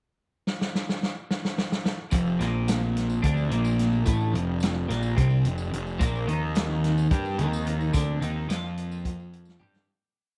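In a 7/8 at 217 BPM counted in eighths, this short, hazy and trippy psychedelic rock piece opens with a vintage drum kit playing a fill through the pickup bar, its punchy kick and medium-tuned snare up front in a small, lightly reverberant room. At 2.1 seconds the groove arrives: a clean, compressed twelve-string electric guitar, double-tracked and phased, plays a single-note riff that a round, fuzz-overdriven picked bass doubles, while a jingly tambourine sits in the background and a mellow, organ-like ensemble pad holds very quiet sustained chords moving from Fadd9 to Bbsus2. Another drum fill sounds as the piece fades out, ending at 9.9 seconds.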